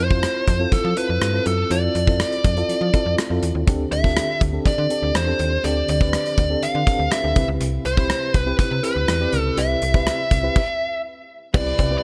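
Dramatic and nostalgic, this 1980s-style pop excerpt moves at 122 BPM in a straight 4/4, cut from a longer piece and set in light reverb. A dark, fuzz-distorted lead guitar carries the melody up front, picked and trailed by digital delay, over a mellow FM electric piano with tremolo and a faint noise layer in its decaying tones. A snappy, metallic slap-like FM bass anchors the low end while a big rock drum kit, with punchy kick, bright cymbals, hi-hat and rim click, booms through gated reverb. The harmony moves from Fmaj7 to D7sus4 at 3.7 seconds and on to Cmaj7 at 7.4 seconds, before a stop at 10.6 seconds. In the final moments, from 11.5 seconds, a reedy, breathing pedal harmonium holds sustained chords and a direct-recorded clean electric guitar, compressed and shimmering with ensemble chorus, slips in a brief riff in the background.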